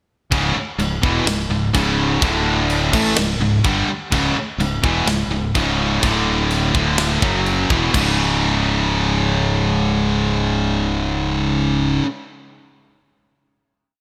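A straight 4/4 metal half groove from a tight drum kit (tight kick, medium-tuned snare, crash and china cymbals in gated reverb) drives this aggressive, relentless heavy metal piece until 8.1 s, while an up-front high-gain guitar, a compressed distorted guitar and a double-tracked overdriven guitar with a warm bite in the background play a power-chord riff over a growly fingered bass doubling it in eighth notes; at 7.9 s the guitars and bass hold a final chord, the bass fading at 12.0 s and the guitars ringing through 12.1 s, in a lush hall and a bright 1980s-style digital sheen.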